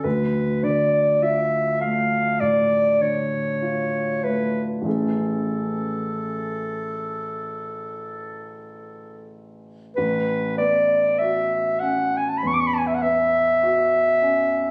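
Luminous and pastoral, this short passage from a longer classical duo drifts in an unhurried rubato, its impressionist harmony moving from D minor through A major seventh to a colored A six-nine. A solo clarinet carries the melody with a smooth top to its tone, sitting up front in classical style and climbing as high as D6. A concert grand piano supplies the accompaniment, also close and present, its deep bass reaching down to A1. Around 10.0 s the music turns to a new section, settling onto that final open chord until it closes at 14.7 s. A wet recital hall reverb surrounds both players, giving the intimate room recording a gentle, lingering halo.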